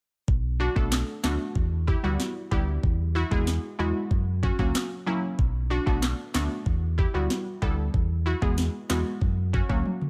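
An overdriven electronic drum kit sits up front in this tough, sultry dancehall excerpt, with a knocking kick, sharp snare, handclaps and toms, and a drum fill at 9.9 seconds. A deep, full sine sub bass with an added octave holds sustained notes beneath, while a crystalline, detuned wavetable pluck with chorus and a filter sweep decays over a repeating Bm7, Em, Eadd9, F# progression. The mix is dry, with little reverb.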